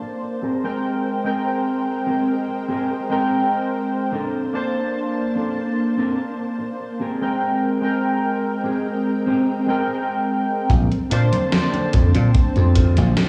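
Warbling, detuned lo-fi synth keys with lush chorus and tape echo open this faded, dreamy vaporwave excerpt at 73 BPM in Bb major, over silky string-machine chords and a dark, clean electric guitar riff carrying a filter sweep and 12-bit sampler grit, drifting between Abmaj9 and Bbmaj9 in a reverb-soaked cassette haze until, at 10.7 s, a bright, foam-muted thumbed slap bass, a punchy acoustic kick and an overdriven, gated 80s drum machine of congas, hi-hat and snare join in.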